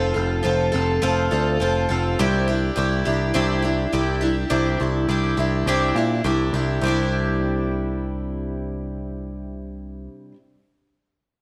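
Jangly, nostalgic rock opens at once with a picked twelve-string acoustic guitar and a picked electric bass sounding together in a straight 4/4 feel. The twelve-string carries the accompaniment, its bright, shimmering, octave-doubled tone set up front and touched with a slapback echo. Beneath it, the electric bass sits equally forward, direct and amped with a growly edge. The harmony moves from F to Cadd9 at 2.2 seconds, and the music shifts into a new section at 6.8 seconds before this brief cut from a longer piece closes at about 10.4 seconds. A lush hall reverb over a small room ambience gives the pair a big arena sound.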